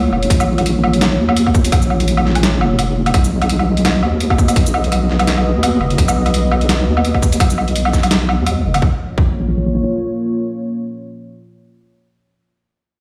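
Heard through a big sound system in a bare stone room, this tense, spacious half-time drum and bass excerpt at 169 BPM in Bb phrygian opens on a drop, with a deep, moody sawtooth pad pumping under sidechain, a wobbling square-and-sine sub bass with chorus up front, a gritty, pitched-down sampler kit of hi-hat, shaker, woodblock and medium-tuned snare, and a hard-clipped electronic kick. The harmony moves from Bbm to B and back to Bbm at 8.8 s as the sampler kit drops out, the kick following at 9.3 s and the bass at 9.8 s, leaving the pad sustaining alone until 12.4 s.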